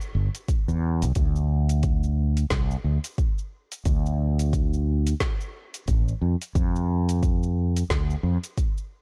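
Organic downtempo with a mystical, meditative mood and a lightly swung 16th-note feel, cut from a longer piece, where a punchy, up-front fretless electric bass pumps against a deep, tape-warm electronic kick while a quieter afro-pop kit adds a woody snare, metallic hi-hats and shaker, all in a dark, dry production.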